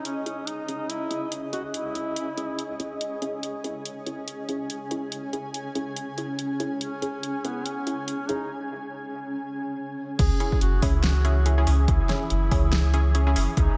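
A half-time 4/4 groove at 142 BPM with a swung sixteenth feel carries this dark, cavernous deep dubstep excerpt in C# minor, where a warm, vibrato-laden duduk sings a folk-style melody with dub echo over a blurred granular cloud pad, muted chorused chord stabs under a filter sweep, and an overdriven deep house kit with a fat snare, until after a break the drop at 10.2 seconds brings in a round, up-front sub bass and a punchy overdriven kick, with a faint breathy wind texture entering at 11.1 seconds inside a reverb-soaked hall.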